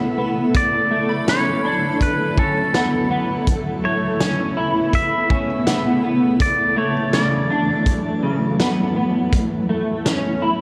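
A straight 4/4 groove from a loose, gritty indie drum kit with a punchy kick and medium-tuned snare enters at 0.5 s beneath this dreamy, floating dream pop excerpt, where a twangy pedal steel guitar carries the melody with slide and volume swells until 8.6 s, a slightly broken-up electric guitar through a small old amp picks chorused, echoing arpeggios, a blurred, detuned granular cloud pad sustains evolving chords, and a faint FM bell glints in the background, the whole mix sitting in a lush hall reverb with a dark production.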